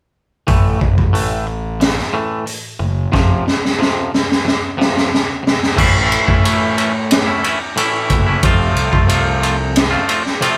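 A twangy electric guitar, a fuzzed picked bass and a raw garage drum kit all start together at 0.5 seconds in this cathartic, bittersweet slice of quiet-loud alternative rock, moving at 91 BPM in a straight 4/4. The clean, bright guitar plays arpeggios from the low to the middle register, pulsing with a harmonic tremolo, while the bass sits dark and round beneath it, overdriven and punchy. The drums are the loudest part and sit up front, with a high-tuned snare, a punchy kick, hi-hat, ride and crash, all sounding saturated and gritty with a rolled-off top, as if played in a small room. A drum fill runs from 3.1 to 5.8 seconds, carrying the music from the opening section, which moves between A5 and F5 power chords, into a second section built on A and F chords. The band sounds like it is playing live together in one room under a light reverb, and the bass drops out at 9.9 seconds while guitar and drums carry on to the end of the cut.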